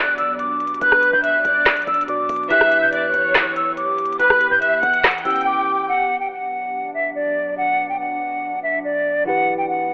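This menacing, melancholic trap excerpt moves at 142 BPM with a half-time feel in B minor, its up-front electronic kit of woody snare, crisp hats, rim clicks and handclaps riding over a punchy, tight 808-style bass in the background until both drop out at 5.5 seconds, leaving a brief silent gap. A hollow, close-miked concert flute carries the melody with vibrato through low-pass filtering and digital delay, joined by a dark, lush bowed violin section that stops at 5.8 seconds, while a worn, slightly out-of-tune tine electric piano with phaser supplies accompaniment and returns at 9.2 seconds. Underneath, an ethereal, detuned sawtooth pad with ensemble chorus sustains chords of Bm and Em throughout, and the whole mix carries a light reverb and a telephone-like filtered sound.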